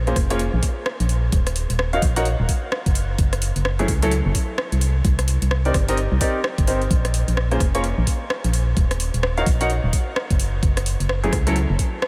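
A light reverb gives this short, late-night cut from a longer two-step UK garage track a soulful air, running at 129 BPM in 4/4 with a 61% swing on the sixteenths. An organ-like FM bass sits up front from the very start, its hollow, percussive tone dark and quickly decaying, moving between Eb1 and Db2. A clear concert grand piano plays stabs with deep lows and long sustain, bathed in lush chorus and analog delay across a range from Gb3 to Gb5. The garage drum kit brings metallic hats and a rim click, while a separate knocking electronic kick enters at 0.2 seconds; both drum parts are layered and overdriven. The harmony drifts from Bbm through Ebm, Gb5, Cm7, Bb5 and Ebm again before landing on Gbm at 10.4 seconds, and the drums ring on until 12.1 seconds.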